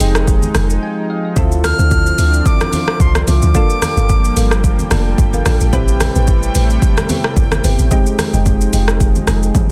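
Amapiano with a soulful, deep mood, heard in a short cut from a longer piece, moving through rich ninth chords over a swung sixteenth-note feel. A deep log drum bass sits up front with a round, dark, percussive tone and a fast, decaying attack, alongside an overdriven, layered deep house drum kit of kick, hi-hat, rim click, shaker and toms. Soft, mellow electric-piano-like synth keys with chorus and a filter sweep play the accompaniment, add a fill at 0.5 seconds, and a lush, thick detuned sawtooth pad holds sustained chords beneath them. Low-tuned congas enter very quietly at 0.4 seconds, while a woody, rustic folk marimba with medium mallets adds stabs in the background, touched with tape echo. A bright, airy concert flute with vibrato and a reedy edge carries the melody from 1.6 to 4.9 seconds, also with tape echo. A brief break runs from 0.8 to 1.4 seconds, a drum fill arrives at 9.5 seconds, and the whole is set in digital ambience with a dense, heavily limited modern master.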